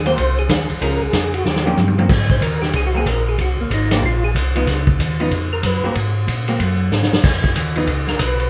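A percussive tonewheel organ opens this bluesy, swinging soul jazz organ trio clip, carrying the melody over a mellow tonewheel organ bass line with audible key click, both turning through a slow rotary speaker and the lead adding chorus vibrato and third-harmonic percussion. A vintage drum kit and a clean, picked hollow-body jazz guitar join almost at once. The guitar comps with a compressed electric tone, while the drums sit up front with a punchy kick, a medium-tuned snare and dark, rolled-off cymbals. After a drum fill, the round-toned lead organ launches into a solo at 2.1 seconds over harmony moving through Ab9, Db9 and Ab7sus2. The solo breaks off at 5.9 seconds and returns briefly at the close, with the whole band heard playing live together in one room under light reverb.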